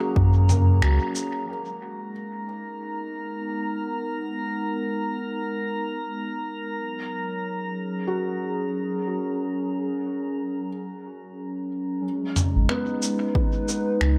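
Meditative and deep, this ambient dub excerpt in G# minor moves at 91 BPM with a swung 16th feel, built on a warbling, detuned tape-like pad with chorus and reverb that holds sustained chords from F#add9 to G#m9 while a felt-muted upright piano with audible action noise plays dub-echoed arpeggios. A punchy, overdriven electronic kick, a round sub bass and a muffled, pitched-down sampler kit of finger snaps, shaker and filtered toms appear only briefly near the start and return from about 12.4 seconds. Between 2.1 and 10.7 seconds a glassy sine texture of drifting overtones drifts in, before a break at 10.7 seconds, all set in light digital ambience.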